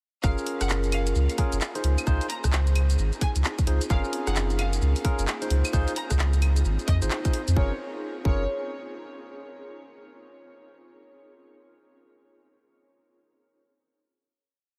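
A sunny, soulful two-step UK garage piece at 131 BPM in Gb lydian, swung on the 16ths, running a single drop from 0.2 seconds that trades Gbmaj9 and Dbmaj9 chords before settling on a final Gbmaj9 at 7.6 seconds. A tight, tape-warm two-step kick and a thick, up-front saturated sub bass riff anchor skipping swung hats, rims, claps, claves and shaker, while a barky, lightly overdriven tine electric piano punches rootless syncopated stabs through diffuse ambient delay. Above them a studio violin section bows a biting, earthy repeating riff with light vibrato and its own delay, and an ethereal, detuned pad sits in the background with chorus, reverb and sidechain pumping, all in a lightly reverberant room.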